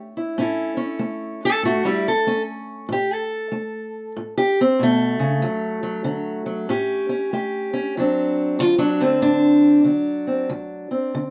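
A loping swing feel in 4/4 sets the pace for this brief, laid-back slice of acoustic country blues, cut from a longer piece and carrying an easy, swaggering mood. A single fingerpicked steel-string acoustic guitar carries the whole thing, its dark, boxy parlour tone sitting up front in the mix and ranging from low D2 up to A4. Through the first 8.0 seconds the guitar plays a solo over a progression that moves from A to D and then to A7. At 8.0 seconds the music shifts to a new section on a D7 chord, continuing until the clip ends at 11.3 seconds. Close, detailed microphones capture the instrument intimately, framed by a moderate studio reverb that lends a touch of room around it.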